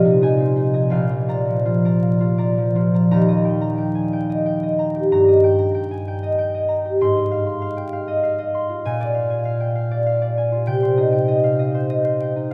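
Classical solo harp music, graceful and serene, this short cut from a longer piece features a lone concert harp moving through a gently flexible 6/8 with rubato, its mellow, ringing fingerpicked tone sitting up front while a cathedral reverb and vinyl crackle give the room a distant, aged air.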